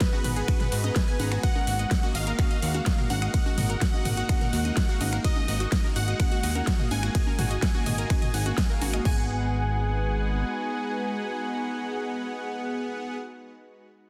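A straight progressive house groove drives this expansive, emotional passage from a longer piece, built on an overdriven big-room kit with a punchy kick, crash cymbal, a huge snare, metallic hi-hats, ride, and finger snaps, while overdriven electronic congas and toms sit in the background with a roomy, re-recorded feel. A fat, thick analog bass holds the low end with a saturated, wave-folded sawtooth-and-sine tone and a filter sweep, pumping against the kick. Above it, a catchy, punchy plucky unison lead carries the melody with vibrato, lush chorus and digital delay, joined by soft supersaw stabs that feel airy and smooth with a moving notch, and a round, evolving analog pluck spinning bright arpeggios behind them. A shimmering, ethereal ambient pad with an octave-up granular sheen and vintage warble sustains the chords throughout, and the melodic parts, bass and percussion all breathe with sidechain pumping. 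The drums fall away around 9.1 seconds as the music moves into a new section, the pluck stops soon after, and the bass stops at 10.4 seconds, leaving the lead, stabs and pad floating over a dense, heavily limited modern master.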